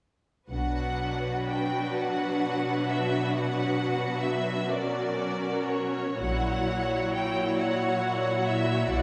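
A solemn, elegiac slow movement for string orchestra in B minor, heard as a short cut from a longer piece, unfolds in a rubato 6/8 at 43 BPM, with a clear, intense first violin melody up front over a smooth second violin line, lush violas, a lightly vibrant cello bass and a focused double bass section that sounds until 1.4 seconds and returns at 6.2 seconds, all moving from Bm through F#/B to F#7/A# in a reverberant church or concert hall.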